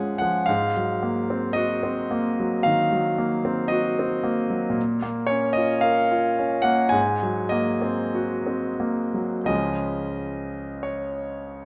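A solo concert grand piano opens this dreamy, tender romantic nocturne, its brilliant, polished tone sitting up front and reaching from deep bass notes to a clear upper register. Moving in a slow, rubato 4/4 at roughly 43-58 BPM and tuned to A4 = 438 Hz, the harmony drifts from Ab13 through Bbm and Ab9 before settling on Db at 9.5 seconds. A moderate stage reverb adds a gentle halo, and a faint mains hum lingers beneath this brief passage cut from a longer piece.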